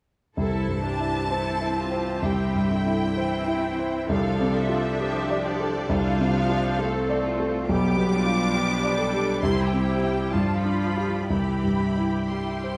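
Classical and romantic in character, this lyrical, lush passage for piano and orchestra moves at 66 BPM in 4/4 with an unhurried, rubato feel and uneven beats, cut from a longer piece and settled in C major. A clear grand piano sits up front carrying the melody, spanning from deep bass notes up to D5, while a focused violin section also carries the melody higher up with bowed vibrato. A second violin section traces a smooth, distant second line in the background, and the violas supply intense accompaniment with a smooth top, as the cellos, close yet tucked behind, hold the bass. All parts play together from 0.4 to 12.8 seconds, with the harmony moving from C through Dm7/C and G7/B back to C at 9.4 seconds, then through G7 before settling on C at 11.3 seconds. A recital hall reverb of 1.4 seconds bathes the ensemble, and the dark, warm production gives the whole a velvety, enveloping sound.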